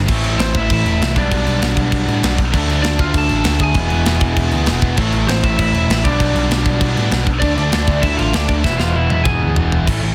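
Aggressive and angry, this excerpt of punk rock runs at 196 BPM in A minor, cycling through Am, G/B, Dm and E over a straight 4/4 beat. A tight distorted guitar carries the riff over a growly, overdriven picked bass, with a warm, overdriven garage guitar in the background, while an up-front metal drum kit with a soft-clipped tight kick and bright cymbals plays underneath and closes with a fill from 8.6 seconds. Over the top, a twangy, slightly broken-up lead guitar with delay carries the melody from 0.4 seconds, all set in light reverb and a dense, heavily limited master.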